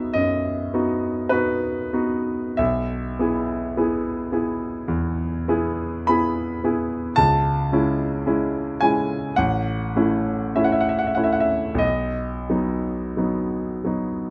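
Serene and tender, this excerpt from a romantic classical nocturne features a clear grand piano playing solo in 4/4 at a slow 43-57 BPM, with a freely breathing rubato feel. Spanning A1 to B5, the instrument sounds smooth and vintage with a short sustain, placed up front in light reverb. Its harmony moves from B through E/B and C#m to A before settling back on B at 11.8 seconds.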